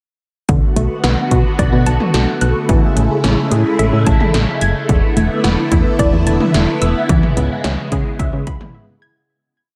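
A dreamy mix soaked in lush digital hall reverb frames this nocturnal, melancholic synth-pop piece, a single verse moving through Bm7, Amaj7, E7sus4 and C#m7. Up front, a bright, swirling string machine holds sustained chords through ensemble chorus and phaser, while a round, dark FM bass with a fast, decaying attack sits beside 80s electronic pad drums: a drum-machine beat with a punchy kick, metallic hats, and gated reverb on the snare and syncopated toms. A warm analog sawtooth pluck with chorus and tape echo climbs in rising eighth-note arpeggios, and the piece fades out from 7.1 s into a brief break at 8.7 s, where only the strings and pluck linger.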